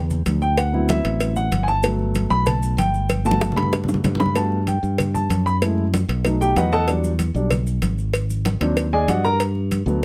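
Afro-Cuban jazz with a sunny, sophisticated mood, moving at a brisk 190 BPM in a straight 4/4 feel and set in G major. A warm, intimate grand piano sits up front and carries a solo across the whole passage, its natural tone carrying audible action noise as it voices chords such as D13, Gmaj7, Em9 and Ab7#11 before settling on Gmaj9. A bright, punchy fingered electric bass shares the foreground with a direct, electric sound in the low register. Thick-skinned, damped congas played with hard hands sit in the background, alongside grainy, mellow maracas with a compressed, saturated edge, while tight, high-tuned cowbell and bongos struck with soft hands sound close and dry. A drum fill from 3.1 to 4.4 seconds marks the turn into the repeated section, and the whole cut, lifted from a longer piece, is captured with close, detailed microphones and light reverb.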